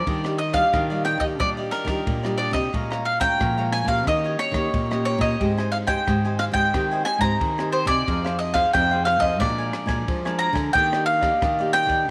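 Lively and festive, this samba and choro cut from a longer piece puts a bright, double-strung bowl-back mandolin up front on the melody, over a crisp picked cavaquinho and a full-bodied fingerpicked nylon-string guitar in accompaniment. A second classical nylon-string guitar carries the bass in the background, its finger squeaks audible, while a compact cocktail drum kit adds a punchy kick, dark cymbals and rim clicks in a smooth small-room sound. A moderate plate reverb surrounds the ensemble, and the chords move from Ebmaj9 to a closing Ebmaj7 at 10.8 seconds.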